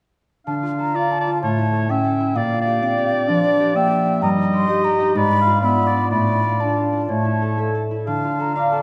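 Classical and restless, this stormy fragment in D minor moves at 126 BPM with an uneven, rubato pulse. A ringing, fingerpicked concert harp sits up front with arpeggios, while a hollow, vibrato-tinged flute, a smooth-topped oboe and a distant, roomy clarinet weave second lines from 0.5 to 8.8 seconds. The chords pass through a Bb6, an Eb/G and a tense G#dim7 before settling back on Dm, all within a dark production bathed in a wet scoring-stage reverb.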